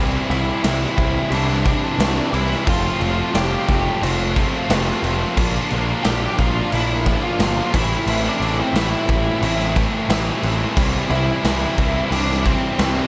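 Anthemic and bittersweet, this quiet-loud alternative rock excerpt moves at a straight 89 BPM in 4/4, centred on C mixolydian and cut from a longer piece. Two bright, picked electric guitars hold the riff in the background from the first second, one thick with fuzz and the other tight and distorted, while a growling picked electric bass sits up front with overdriven, direct-and-amped grit. At 0.3 seconds an octave-fuzz lead guitar carries the melody in a darker, distorted tone with a slapback echo, and a raw garage drum kit enters alongside it. The kit is acoustic and up front, with a punchy kick, a medium-tuned snare and crash cymbal, saturated and gritty with a rolled-off top and a pumping, bright stone-room character. The harmony travels from C to F, Bb6 and Am before returning to C, all set in a light studio reverb.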